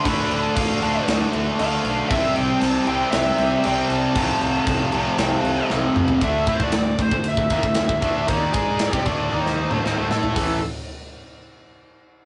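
Epic and relentless, this short heavy metal cut from a longer piece opens in a half-time feel before the drums push into a straight drive after a fill at 6.2 seconds. A dark, bluesy lead guitar carries the melody with distorted bite, riding over a bright, up-front overdriven rhythm guitar and a high-gain guitar set back in the mix, while a very quiet, double-tracked and compressed distorted guitar adds its riff only until 6.2 seconds. Beneath them a growly fuzz bass, fingered and overdriven, anchors the low end. The tight metal kit sits up front with a gritty, saturated snap, its medium-tuned snare, tight kick, hi-hat, ride, crash and toms driving the groove, with another fill leading toward the final chord change. The harmony moves from D minor through C and F over C before settling on power chords, and the whole thing sounds like a rough rehearsal-room take, with a moderate small-room reverb and a dusky, rolled-off top end.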